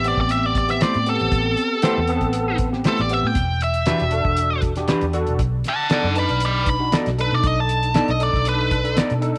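A straight-eighth soul blues groove rides on a cloth-damped, thuddy drum kit with a fat snare and tight kick, beneath a round, foam-muted vintage fingered bass, while a bright tine electric piano with ensemble chorus comps through Am7, Em7 and B7#9. Up front, a biting overdriven lead guitar plays a soulful, brooding solo, and a clean electric guitar adds quiet stabs in the background from 0.8 seconds. The short excerpt sits in a small room with light reverb and a faint mains hum.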